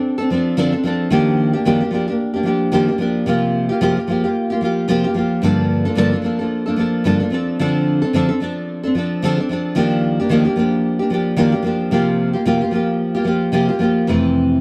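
A loose 16th-note swing in 4/4 carries this hazy, sunny indie pop fragment, played by a lone nylon-string guitar that is fingerpicked and sits up front. The guitar's full-bodied, deep classical tone picks up audible finger squeak, while a subtle chorus and a warbly pitch drift give it a dreamy, slightly wobbly glow in a light reverb. Its jazzy progression of seventh and ninth chords cycles through Dm7, Ebmaj9, C7sus4 and Gm9 before settling on Fmaj7 at 14.1 seconds.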